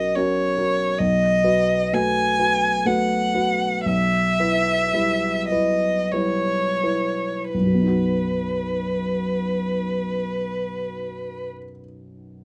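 Flowing in a rubato 3/4, the music moves between 40 and 72 BPM and gradually slows over its first 7.5 seconds. This lyrical, tender romantic classical excerpt for violin and baby grand piano sits in B major, tuned to A4 = 441 Hz, and is cut from a longer piece. A single bowed violin carries the melody up front with a rich, expressive tone, colored by vibrato and portamento. Beneath it, the dark, mellow piano supplies accompaniment across a deep register, its notes hanging with long sustain. The harmony passes through B7 and Em/B before settling on B at 7.5 seconds, where a new section begins; the violin stops at 11.5 seconds and the piano rings on briefly after. Close, detailed microphones and a light reverb give the duo an intimate, clear presence.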